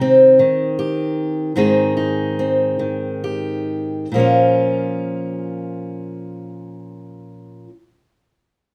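In a slow 6/8 counted at 44-52 BPM in dotted quarters, with a straight feel, this short folk fragment eases into a slowdown across its first 4.1 seconds. A lone fingerpicked steel-string acoustic guitar carries the accompaniment from start to finish, ranging from Ab2 to Ab4 and sitting up front with a warm, concert-style tone. The harmony moves from Cm to Ab, then settles on Bbm at 4.1 seconds as a second section begins, grounding the piece in Bb dorian with tuning set at A4 = 441 Hz. The close, detailed microphones and little reverb give the strings an intimate, dry presence. The mood is melancholic and heartbroken, like a brief glimpse taken from a longer piece.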